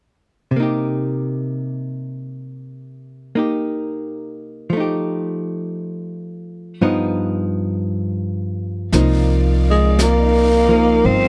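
A slow 4/4 with a lazy swing on the eighth notes sets an intimate, melancholic jazz ballad mood. An electric hollow-body archtop guitar opens alone at 0.5 seconds, playing a clean, compressed, picked accompaniment up front with a dark tone over a Cm7 that moves through F9 and Gaug7. At 8.9 seconds, as the harmony settles on Cm11, the band arrives: a woody, growly pizzicato upright bass sits close and prominent, a jazz brush kit adds brushed snare and hi-hat from a small room, and a lush bowed string section holds sustained chords with expressive vibrato. A tenor saxophone takes the melody at 9.7 seconds, breathy and raspy with a subtone, scooped notes and a growling edge. Light reverb and a dark production give the fragment, cut from a longer piece, a smoky, late-night glow.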